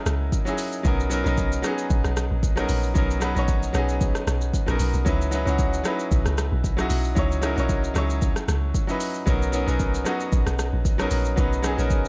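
A bright baby grand piano with audible action noise sits up front, voicing jazzy minor-eleventh and major-ninth chords over a round, percussive log drum bass and a tape-warm deep house kit of kick, hi-hat, rim click and shaker, giving this short amapiano excerpt a hypnotic, deep mood with a swung sixteenth-note feel in a dry, dark mix.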